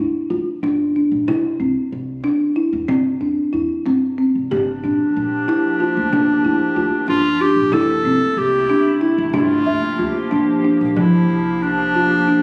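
Contemporary instrumental chamber music in an uneven 5/8 at 185 BPM counted in eighths, this excerpt from a longer piece feels urgent yet pensive, set in G dorian. A folk marimba played with soft mallets carries the arpeggios from the start, its hardwood bars sounding woody, rustic and round, close-miked and up front. Beneath it, a pizzicato upright bass on gut strings gives a dark, thumpy low end, while a small, bright frame drum in a live room adds percussion. At 4.5 seconds a warm, classical-style clarinet enters with a second line, close and forward, and at 4.9 seconds a glassy, ethereal FM pad enters on slow attacks with ensemble chorus and its own reverb, sustaining chords over harmony that moves from G7 and Cadd9/G through Gm7 and Am/G. The overall sound has the candid quality of a phone capture in the room, placed in a moderate scoring-stage reverb, and the music shifts into a new section at 11.0 seconds.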